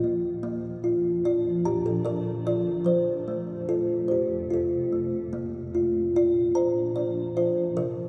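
A woody, hollow-toned kalimba leads this gentle, tender children's lullaby with soft, mellow fingertip plucks up front, trailed by tape echo. Beneath it, a quieter, dark granular cloud pad holds blurred, detuned chords with a slow attack and its own built-in reverb, moving from Bb to F and back to Bb in Bb major. The fragment sways in a rubato 3/4 at 74 BPM, tuned to A4 = 436 Hz, and its 8.1 seconds sit in a vast, echoing cathedral-like space.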